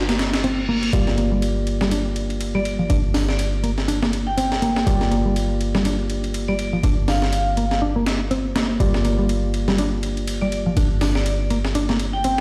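A deep, boomy 808-style bass holds a G1 note up front beneath a dark, foam-muted picked electric bass riff through a low-pass filter and delay, clean tine electric piano stabs on a Gm7 chord, and a gritty, compressed sampler-style breakbeat kit with a high-tuned snare and filtered cymbals, while an electronic reverse cymbal appears at 0.3 seconds and a bright, ringing hard-mallet vibraphone melody with an old-record tint enters at 2.5 seconds, giving this raw, funky, swung breakbeat excerpt the sound of a big system echoing in a bare stone room.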